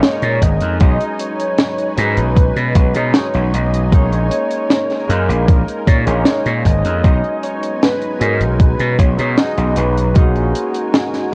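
An overdriven, thumpy electronic kick with 12-bit sampler crunch sits up front in this dreamy, faded vaporwave cut from a longer piece, joined by a tight, dry funk kit of hi-hat and high-tuned snare, a punchy, tube-saturated slap bass, a bright, barky tine electric piano bathed in lush chorus, a very quiet, silky, warbling string machine holding sustained chords, and a smooth, velvety detuned synth lead carrying the melody through cassette tape and tape echo, all in a close, nearly reverb-free cassette sound over chords moving between F#69/A# and B6.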